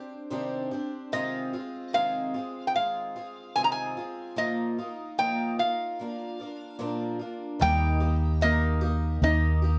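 Light reverb frames this peaceful, hopeful acoustic folk excerpt in Eb major at 74 BPM, which opens on a boxy, shimmering, octave-doubled picked twelve-string guitar, joined at 1.1 s by a nasal, metallic resonator slide guitar carrying the melody up front, before a twangy, plunky open-back banjo adds arpeggios and a round, dark fingered electric bass holds Eb from 7.6 s as the harmony arrives on Eb.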